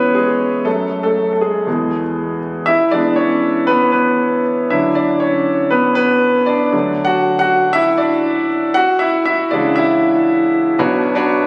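Pop piano piece at 119 BPM in 4/4, an anthemic and uplifting excerpt played by a bright concert grand piano alone from 0.0 to 11.5 s, ranging from a deep bass B1 up to F#5. The piano sits up front with long sustain and audible action noise, moving through E, F#madd9, Bm/D, D and C#m before landing on Bmadd9 at 10.8 s, with a brief opening passage giving way to a longer second section at 2.7 s. The sound carries a lush concert-hall reverb plus club reverb and compression, captured on a phone in the room.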